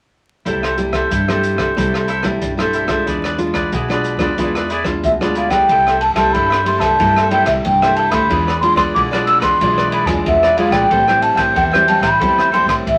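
Samba and choro at 92 BPM in C major, lively and festive, in a short cut from a longer piece where crisp, picked cavaquinho sits up front over full-bodied, fingerpicked nylon-string guitar with audible finger squeak, woody pizzicato upright bass on gut strings, and an open jazz drum kit in a small room with a boomy kick, dark cymbals, hi-hat, ride and rim click. At 5.0 seconds an airy, mellow baroque flute enters with the melody, its wooden tone carrying vibrato and a soft attack and sounding unsteady, just before the second section begins at 5.7 seconds. The chords move between C6, E7b9 and Am7, and the sound has a wet studio reverb and a layer of vinyl crackle.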